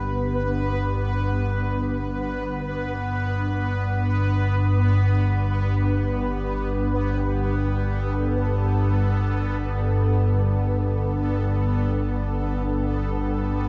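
Floating in free time, this dark ambient drone, cut from a longer piece, feels unsettling and ominous across its 13.7 seconds. Up front sits a calm, organ-like drone built from a sine tone in unison, low in the register, with a slow attack, long sustain and long release, thickened by ensemble chorus and its own reverb, while a filter sweep passes over it. Above it, a bubbling sawtooth texture moves through random, resonant filter steps, sitting bright but much lower in the mix, with chorus and reverb of its own, and it fades out over the course of the passage. Together they rest on a single Gsus2 chord throughout. The whole mix is soaked in a huge, dreamy reverb with an eight-second tail, giving the sound a cavernous, suspended quality.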